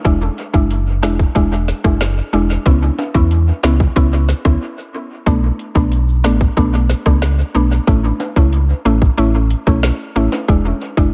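An echo-heavy digital ambience surrounds this short dancehall excerpt, giving it a sultry, tough character at 92 BPM in a straight 4/4. A woody, round mallet-like synth pluck opens at 0.0 seconds with a fast attack and short decay, its FM triangle tone thickened by chorus and trailed by dub echo. The sub bass with octave joins at 0.1 seconds, deep and sine-pure with a sustained, mellow body that sits up front beneath the harmony. An electronic island pop drum kit drives the groove with a tight kick, woody snare, metallic hats and rim clicks, its overdriven sound also feeding dub echo. Tube shaker and timbales add live-room texture far back in the mix, played with hard hands and sent into the echo. The progression moves from E7 through C#m7, Bm7 and A before returning to E7, with a brief break from 4.6 to 5.3 seconds.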